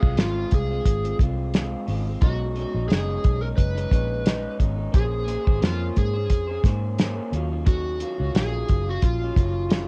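Over a loosely swung 88 BPM groove in 4/4, this hazy, dreamy bedroom-pop excerpt pairs a cloth-damped, thuddy drum kit with a fat snare and tight kick up front, a dark, round, foam-muted fingered bass with transformer saturation, and a slightly broken-up electric guitar through a small old amp with warbly pitch drift, while an overdriven slide guitar played with fingerpicks carries the melody through lush chorus and tape echo, all moving through Dbmaj7, Cb69, Bbm9 and Ebm9 under a lo-fi cassette sheen and light reverb.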